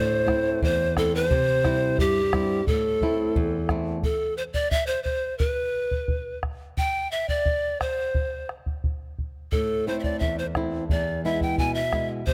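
Wistful and earthy, this Andean folk piece moves at 88 BPM in 2/4 in A minor. A breathy bamboo pan flute with vibrato and reedy chiff carries the melody up front, over a round, dry bombo. A boxy fingerpicked flamenco guitar with audible finger squeak drops out at 4.0 seconds, leaving the flute and drum alone over a chordless passage, then returns at 9.5 seconds. Close, detailed microphones and light reverb frame this excerpt cut from a longer piece.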